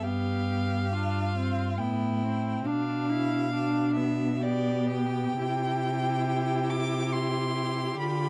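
Lyrical and serene, this short passage from a slow romantic movement for string quartet unfolds in a gentle triple metre with a flexible, rubato feel. The first violin carries the melody high above, while the second violin sings a lower line and the viola fills in the accompaniment. The cello holds the bass and sits up front in the mix, giving the texture its grounding. All four players bow with vibrato and a smooth, even tone, each instrument sounding rich throughout the 8.3 seconds. The harmony moves from G to G/B and settles on C at 5.4 seconds, and the dark production and light reverb lend the ensemble a soft, enveloping glow.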